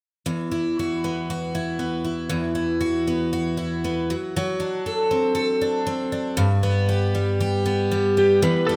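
A rough home-demo sound with light small-room reverb frames this tender, reflective pop excerpt in E minor at 118 BPM, where a bright, shimmering, octave-doubled picked twelve-string acoustic guitar carries the accompaniment up front from 0.3 seconds through Esus2, D7/F# and G, before a slightly broken-up slide guitar played with fingerpicks slips in a brief melody at 8.2 seconds and a clean, compressed twelve-string electric guitar with spring reverb adds an arpeggio at 8.7 seconds.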